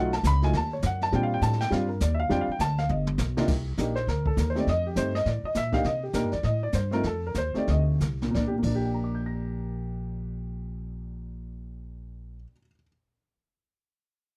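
Swung eighths in 4/4 at 173-204 BPM drive this sophisticated, relaxed jazz piano trio fragment in Bb major, where an intimate baby grand with audible action noise and short sustain carries the melody over woody, thumpy pizzicato upright bass on gut strings and a brushed kit with dark cymbals and a boomy kick; a drum fill at 2.9 seconds leads into Cm7 and F7 changes that slow down from 5.8 seconds, and the drums drop out at 8.7 seconds, all in a dry, close 1970s-style studio sound.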